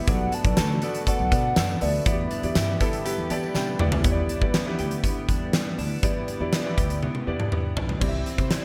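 1980s-style pop with a nostalgic, urgent mood, where a hollow, clarinet-like synth lead with chorus and delay carries the melody until 3.5 seconds over a concert grand piano with deep bass, a smooth detuned analog pad, a clean, direct-recorded electric guitar riff in the background, a woody pizzicato upright bass, a very quiet jingly tambourine and a huge arena drum kit with a fat snare, punchy kick and gated reverb, set within a lush hall and a bright digital production, with a drum fill at 7.0 seconds in this short cut from a longer piece.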